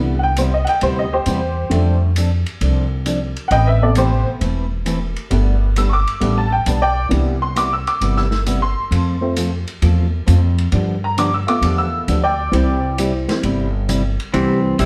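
A swinging 133 BPM shuffle in 4/4 drives this cheerful, down-home western swing excerpt in C major, where a jangly, detuned honky-tonk upright piano takes the lead up front from the start, backed by a picked dreadnought acoustic guitar, a thumpy pizzicato upright bass with gut strings, and a vintage drum kit with dark cymbals and a rolled-off top that enters at 0.4 seconds on hi-hat, ride and snare. The chords move from Cmaj7 through F6, Amadd9 and Gadd9 before resolving via G7 to C, with the piano dropping out at 13.4 seconds. At 14.3 seconds a bright, twangy pedal steel guitar arrives with volume swells and slide, joined by a dark hollow-body jazz guitar in the background, all in a live, moderately reverberant room.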